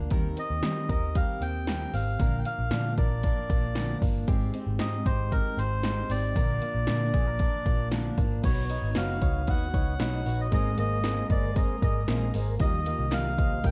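Breezy and nostalgic, this jangly indie pop clip moves at a straight, easy pace under a dark, lightly reverberant production, with a reedy, breathy melodica carrying the melody over a twangy, direct-recorded clean electric guitar playing arpeggios through harmonic tremolo and a full-bodied steel-string acoustic guitar picking quietly in the background. A round, foam-muted vintage bass and an up-front deep house drum kit, overdriven with a deep kick, punchy snare and metallic hats, anchor the groove. At 8.4 seconds a mellow overdriven combo organ with light vibrato joins as the harmony shifts, and a crisp, very quiet group handclap sounds briefly at 13.1 seconds.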